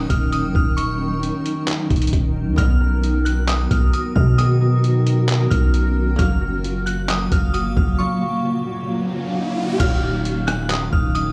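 A deep, sine-toned 808-style bass sits up front in this melancholic, ethereal cloud-rap excerpt at 133 BPM in half-time, joined from 0.1 s by a gritty, pitched-down trip hop sampler-style kit with a thumpy kick, handclaps, hi-hat, rim click and crash cymbal. A blurred, evolving granular pad holds chords in Eb minor, moving from Ebm9 through Bmaj7 and Gbmaj7, while a crystalline FM synth bell carries the melody with chorus and tape echo, a dark, clean electric guitar plays arpeggios through spring reverb, and a woody koto sits in the background. An electronic riser builds from 9.0 s into a return to Ebm9 at 9.8 s, all within an echo-heavy mix.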